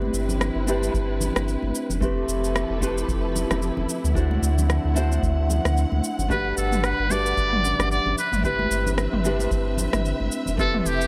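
Set in a light small-room reverb, this smooth sunset chillout fragment swings gently as a fingerpicked nylon-string guitar, shaped by a filter sweep and digital delay, plays alongside lush, distant bowed strings, a round, up-front sub bass, an overdriven deep house kit of rim click, shaker and toms, a deep electronic kick and bright, high-tuned congas, until a buzzy, metal-muted trumpet with scooped notes enters at 6.3 seconds to carry a jazz-style melody.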